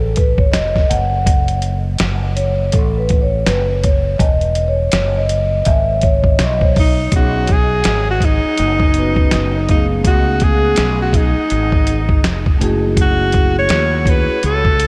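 A padded-mallet vibraphone opens this cool, smooth jazz-hop excerpt, its ringing, metallic tone taking a solo turn over a round, dark fretless bass treated with analog chorus. Almost at once a dusty, sampler-style drum kit joins up front, its compressed hi-hat, thumpy kick and medium-tuned snare carrying a gritty, tape-warm character and the air of a large room. The groove sits in an easy swing, with mellow harmony moving through chords such as C#7b13, F#m and Eadd9. At 6.8 seconds a breathy alto saxophone steps forward to carry the melody, whispered and intimate with vibrato, a soft attack and a trail of delay. The vibraphone drops out at 14.4 seconds, and the saxophone, bass and drums finish the passage under a light digital ambience.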